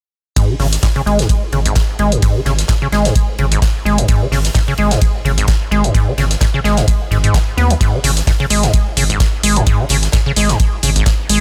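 A squelchy, resonant square-wave acid bass sits up front in this raw, gritty acid house excerpt at 129 BPM in 4/4 with a 56% swing on 16ths, its hollow riff running from G#1 to B3 through overdrive, subtle chorus, tape echo and sidechain pumping. Beneath it, a round, nasal analog bass with tube saturation and pumping enters at 0.6 s, while a deep, tape-warm electronic kick sits up front beside an analog electronic hi-hat re-recorded in a small room. A big acoustic rock kit adds bright, high-passed cymbals, hi-hat, ride and a medium-tuned snare, and a small room ambience surrounds the track.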